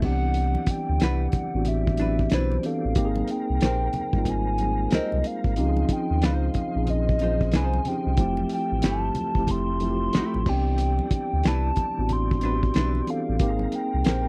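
A lazy swung sixteenth-note groove from a muffled, cloth-damped drum kit with a fat snare, tight kick, finger snaps, hi-hat, dark crash and very quiet, thick-skinned congas sets up a sensual, relaxed neo-soul R&B fragment, anchored by a deep, full sine sub bass with octave sitting up front. A hollow, woody clarinet-like synth lead with chorus and vibrato carries the melody over a mellow tine electric piano and a smooth tonewheel organ that hangs in the background through a slow rotary speaker, all moving through lush major-ninth chords. From 1.0 s a dark, compressed hollow-body archtop guitar adds a picked second line, and the dry, close recording has a gritty, lo-fi 1970s studio character.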